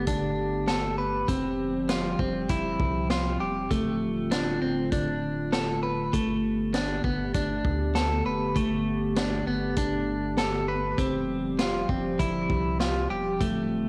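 A clean, picked electric guitar sits up front with compressed arpeggios, lightly chorused and tape-echoed, over a warbling, detuned, dark pad, a thick saturated sub bass and a punchy, rolled-off vintage drum kit that enters at 0.1 seconds, giving this blissful, ethereal dream pop excerpt at 99 BPM in G mixolydian a nostalgic, lo-fi cassette haze as it drifts through Gadd9, Fsus2 and Dm7 in a small room.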